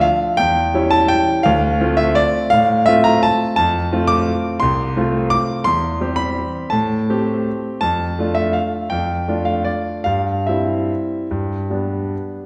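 This classical piano waltz in 3/4 is cut from a longer piece, and its mood is playful and sparkling. A solo grand piano, warm, smooth and vintage in tone and sitting up front, plays with rubato across a tempo that moves between 139 and 184 BPM, spanning C2 to D6 and tuned to A4 = 439 Hz. The harmony opens on C#dim/E and Dm7 before settling into C major at 3.6 s, where it passes through F, C/E, Am7 and Dm/F. It then reaches C/G and closes on G at 11.3 s, leaving the phrase poised to continue. A wet recital hall reverb with a 1.8 s decay surrounds the instrument, and the listener seems placed further back in the room, giving the 12.5 s passage an airy, concert-hall glow.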